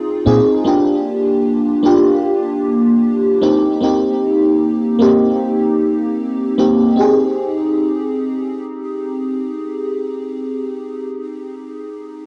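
An FM electric piano layered with a soft pad carries this nostalgic, melancholic vaporwave fragment, its detuned, lush tone with a fast attack sitting up front through phaser, analog chorus, tape echo and cassette wear. Lightly swung, it drifts over suspended and sixth chords before shifting to a new section at 7.0 s on an Abmaj7/C. A moderate spring reverb and a hazy home-cassette sound give this short cut from a longer piece a dreamy, faded quality.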